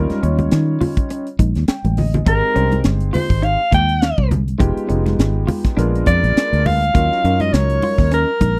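A punchy soprano saxophone with light vibrato carries the melody from 2.3 s in this driving, funky electric jazz fusion excerpt, sitting up front alongside a round, foam-muted fingered bass and a tight funk drum kit with a high-tuned snare. A dark, mellow baby grand piano provides accompaniment and plays a fill at 1.4 s, just before a drum fill at 1.8 s, while congas ring in the background and a twangy, clean electric guitar with analog chorus adds stabs. The chords move from Eb9 through Abmaj7, Fm7b5 and Bb7b9 to Ebm7, all captured in a dry, close 1970s-style studio sound.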